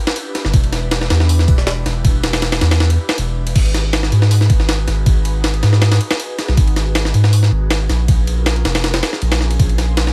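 Drum and bass in a jungle vein, this frenetic yet nostalgic cut opens on an airy, breathy pad holding sustained chords through chorus and phaser in the background, joined at 0.1 seconds by a gritty, compressed, pitched-up sampler-style jungle kit of thumpy kick, medium-tuned snare, hi-hat, ride and crash cymbals up front, and at 0.4 seconds by a deep, round, tube-saturated dub sub bass, all in a dry mix dusted with vinyl crackle as the harmony moves from Em7 to G#m7 and A#m7.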